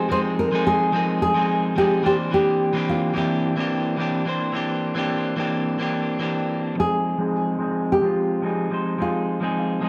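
Chillout with a relaxed, wistful mood, this short passage cut from a longer piece moves at an easy, straight pulse in four. A nylon-string guitar carries the melody throughout, its thumb-plucked tone full-bodied and deep in a classical vein, trailed by dub echo. Beneath it, an electric guitar at the edge of break-up plays the accompaniment, twangy and scooped with a picked, slightly broken-up bite, placed up front and shaped by a low-pass filter and its own dub echo. The harmony rests on Fm7 before shifting to C9 at 2.1 seconds, then returns to Fm7 as a new section begins at 6.8 seconds, where a filter sweep colours the electric guitar through to the close. An echo chamber reverb and small-room ambience give the echo-heavy mix a wet, enveloping space.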